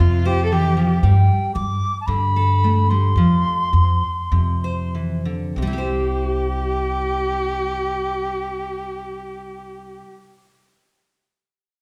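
A reverberant recital-hall ambience surrounds this short cut from a longer acoustic folk piece, giving it a pastoral, hopeful air in a straight four-four. A fingerpicked jumbo steel-string guitar with old strings carries the accompaniment throughout, sounding woody and full-bodied, while a thumpy pizzicato upright bass sits up front underneath. A bowed cello opens briefly as a second line before a wooden flute takes the melody from 1.0 to 4.9 seconds, pure and crisp in attack with vibrato and lifted highs. The pace slows while the flute sings. At 5.6 seconds the cello returns up front for the second section, its nasal, boxy tone shaped by expressive vibrato and portamento as the harmony settles onto C.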